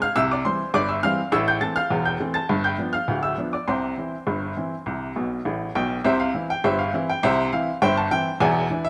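Cheerful and jaunty, this short ragtime piano excerpt moves at 102 BPM in 2/4 with a straight feel, set in C major. A clear upright piano plays solo throughout, spanning a broad range from D1 up to A6 and sitting up front with an intimate, woody character, short sustain and audible action noise. The harmony passes from C through Am and G7 before returning to C, and the piano adds a fill between 5.2 and 6.1 seconds just as the opening section gives way to a new one. A moderate echo chamber reverb with a 2.3-second decay surrounds the natural piano tone, lending it a sense of space. The passage is cut from a longer piece, ending at 8.9 seconds.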